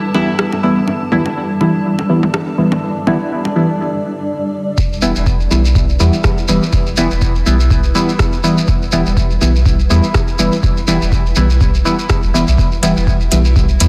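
A swung 4/4 dub techno groove, hazy and hypnotic, starts with a filter-swept granular cloud pad, an eerie metallic drone, up-front mellow chord stabs trailing dub echo, overdriven electronic bongos and toms, and a deep house kit of metallic hats and rim clicks, then after a break at 3.8 seconds a round sub bass, a tape-warm kick and a grainy shekere arrive at 4.8 seconds, with the pad, stabs and bass pumping under a dense, heavily limited master.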